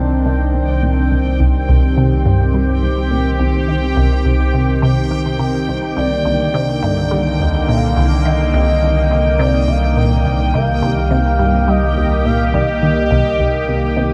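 Set to a straight 4/4 pulse at 105 BPM, this mysterious, hypnotic ambient passage in C minor rests on a single Cmadd9 chord and is cut from a longer piece. A squelchy, resonant blip pluck with a fast attack and short decay carries the riff between C2 and G3, colored by phaser, analog chorus and delay. Beneath it, a round sine sub bass holds a deep C2. A bright, detuned sweeping pad sustains chords from D3 to G4, sitting up front with chorus and shimmer reverb, while a quieter bubbling texture with random filter steps hovers on G5. At 6.0 s a smooth, expressive synth lead with vibrato and a moving notch enters, tracing a melody between D5 and G5 through subtle chorus, shimmer reverb and delay, all set in a huge ambient space with a long 7.3-second tail.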